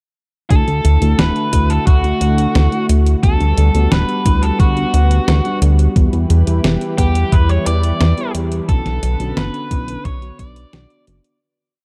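A biting, overdriven lead guitar carries a picked, motif-based melody through this short, dreamy and romantic synthwave piece, its line trailed by delay. Beneath it, a lush, detuned unison pad holds sustained chords, thickened by chorus, roughened by vintage 12-bit sampler grit and pulsing with sidechain pumping. A soft, round FM electric piano sits in the background with chorused, tape-echoed stabs in a dotted rhythm. Up front, a glossy synth bass drives eighth notes with the same pumping, while a thumpy electronic kick and a 12-bit drum machine with a fat snare and closed hi-hat lay down an 80s machine backbeat in a small room. The harmony moves from Dadd9 through Gmaj7/D and Em to Bmadd9, and the piece, dark in production and touched by light reverb, fades out from 7.8 seconds to its end at 11.4 seconds.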